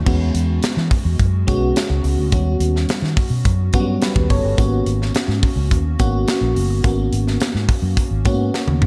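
Nocturnal and bittersweet, this short excerpt cut from a longer piece is polished 1980s jazz-funk pop at 106 BPM in G# minor, where a dreamy, detuned FM electric piano with a soft pad layer, lush chorus and slapback echo moves through E69, D#7alt and G#m11 over a round, foam-muted fingered bass and an up-front studio drum kit with a punchy kick and a high-tuned snare, all set in a big arena-like hall reverb, before a drum fill at 8.5 seconds.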